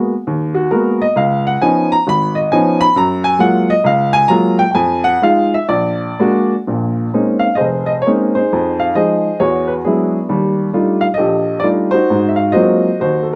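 A woody, natural-sounding upright piano, up front, plays alone in this cool, late-night solo jazz fragment cut from a longer piece, its swung eighths loosened by rubato as rich extended chords such as Abm9, Gbmaj9 and Ebmaj9#11 drift through a moderate club reverb.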